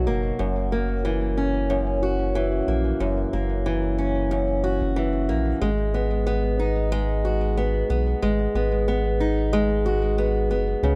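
This short excerpt has a lightly reverberant sound, with an old ladder-braced acoustic guitar sitting up front and a round analog bass beneath it. It is a playful, warm piece of folktronica at 92 BPM in 4/4, with a gentle swing on the sixteenths. The picked guitar plays arpeggios with a warm, boxy character, colored by tape echo, across the full 11 seconds. The bass is deep and dark, with a fast attack, sustained notes and a filter sweep giving its tone movement. The harmony moves from F#7 to G#m7 at 5.6 seconds.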